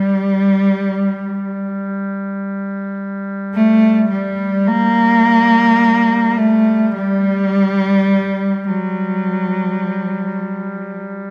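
Solemn and mournful, this short excerpt from a Caucasian folk lament in free time and G harmonic minor sets a single dark, woody bowed cello with vibrato up front, carrying the melody between F#3 and Bb3 over a soft duduk drone on G3, all in the generous reverb of a recital hall.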